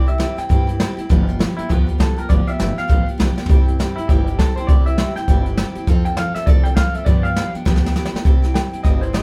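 A twangy, slightly broken-up electric guitar carries the melody from the first instant over a full-bodied steel-string acoustic guitar, picked with audible finger squeak, and a woody, thumpy pizzicato upright bass, before an up-front jazz brush kit with a boomy kick joins at 0.1 seconds in this upbeat, rowdy rockabilly excerpt at 201 BPM with a swung feel, moving through C, G7 and F in C major under light reverb, like a band playing live in one room, and adding drum fills at 3.3 and 7.7 seconds.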